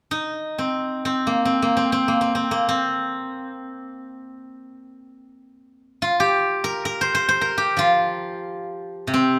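A steel-string zither enters alone at 0.1 s, its fingerpicked tones sounding silvery and ringing from close up front. This short excerpt of Chinese traditional music, cut from a longer piece, unfolds in free time in the C yu mode, giving it an elegant, longing character. The solo part spans the range from C3 to C5, and its acoustic timbre stays bright throughout. A moderate recital-hall reverb, with a decay of about 1.4 seconds, surrounds the instrument with the airy resonance of a church or concert hall. The zither carries the whole recording by itself until it ends at 9.4 s.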